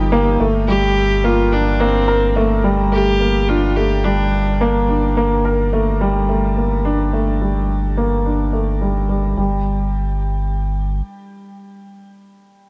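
This is piano and strings electronica, cut from a longer piece, with a hypnotic, melancholic mood in a straight four-beat metre. A dark upright piano carries the riff up front, its mellow, woody tone washed in shimmer reverb and delay, and it plays until 12.7 seconds. A round analog bass holds a deep, sustained low note with a fast attack, its square, sine, triangle, sawtooth and wave-folded tones blended, and a filter sweep runs across it for most of its stretch before it stops at 11.0 seconds. A single bowed viola sings the melody with light vibrato and a reedy, period-style gut-string sound with a smooth top, also bathed in shimmer reverb and delay, but it drops out by 4.6 seconds. The harmony rests on one minor chord with an added ninth until the chords fall away near the end. A lush hall reverb and a dark, warm production give the whole piece an enveloping glow.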